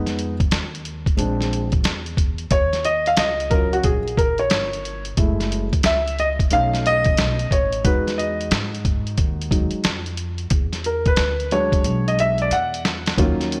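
Cool and smoky, this jazz-hop excerpt at 90 BPM rides a swung 4/4 groove as a dark, mellow concert grand piano with audible action noise solos up front over chords moving from Fm7b5 through Gbm7 to Emaj9, backed by a woody pizzicato upright bass and a muffled, pitched-down sampler-style drum kit with a thumpy kick, with a drum fill arriving at 11.8 seconds, all set in light reverb and studio ambience.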